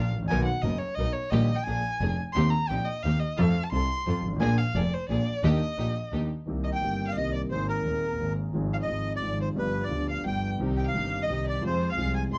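A bowed violin with expressive vibrato and portamento carries a solo from the start, and at 6.7 s a reedy, up-front bandoneon takes the melody as this melancholic, passionate tango excerpt shifts from Eb major to C minor. Set in 3/4 at 175 BPM with a rubato feel, the arrangement rests on an intimate, vintage-toned concert grand piano with audible action noise and a focused, bowed double bass, while a rich studio string section adds background stabs that drop out at 6.3 s and return at 10.6 s. Close, detailed microphones and light reverb frame the recording.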